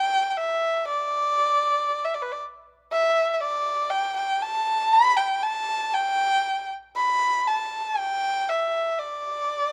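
Chinese traditional music in G gong mode, this pastoral, graceful fragment from a longer piece has a solo erhu play freely in rubato around 59 BPM in 2/4 for its full 9.7 seconds, ranging from B4 to B5. The single bowed voice sits up front with a nasal, earthy tone and a smooth top, shaded by light vibrato and sliding portamento. Close, detailed microphones and light reverb frame the instrument, with a faint mains hum beneath.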